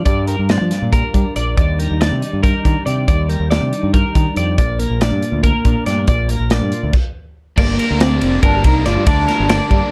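Wistful and intricate, this fragment of a longer math rock and midwest emo piece moves in an uneven 7/8 with a straight feel. Two bright, twangy twelve-string electric guitars open the passage: one plays clean, picked chordal accompaniment through an ensemble chorus, while the other spins higher arpeggios colored by harmonic tremolo. A growling, overdriven fingered bass sits up front beside an acoustic drum kit with a tight kick, medium-tuned snare, hi-hat, ride and crash, all in a small, pumping room. The chorused accompaniment drops out at 6.9 s, and at 7.6 s a new section begins. Here a slightly broken-up guitar through a small old amp carries a fingered, tremolo-tinged melody, while a double-tracked overdriven guitar riff sits in the background. The production is dark, warm and nearly dry, with little reverb.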